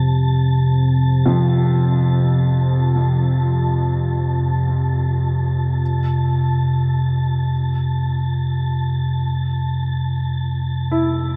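This dark ambient drone excerpt, cut from a longer piece, unfolds in free time around F major with a desolate, dark mood. A deep, rumbling drone sits up front from the start, spanning F2 to C3 with a slow attack, long sustain and extended release inside its own built-in reverb. Above it, a faint wind-like noise texture hovers on A5, airy and breathy, and it fades out across the 11.4 seconds. At 1.3 seconds a smooth, vintage-toned grand piano enters with arpeggios ranging from F2 to E4, softened by a diffuse ambient delay and set back in the balance. The whole is bathed in a huge ambient reverb with an 8.4-second tail, giving the dark, warm production a vast, lonely sense of space.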